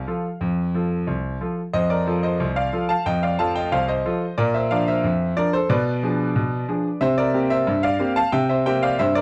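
A bright concert grand piano plays alone and up front in this lively, playful ragtime fragment, cut from a longer piece, moving at 91 BPM in a straight 2/4 in F major. Its brilliant upper register sits over a deep bass, and the close, dry 1970s-style studio sound carries only a light touch of reverb. After a brief opening on F, a new section begins at 1.7 seconds, moving through F7, Bb, Bdim7 and C7.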